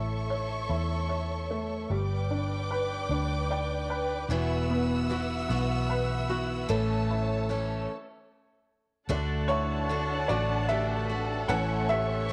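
A round, punchy muted electric bass sits up front in this tender, romantic six-eight pop ballad in D major, moving at a slow 50 BPM alongside a worn, slightly detuned upright piano and a lush string section bowing sustained chords with vibrato and portamento. After a piano fill, a bright steel-string acoustic guitar joins at 4.3 seconds with picked arpeggios, and following a brief stop at 7.9 seconds, the piano takes a solo from 9.1 seconds. A moderate spring reverb gives this excerpt a gentle sense of space.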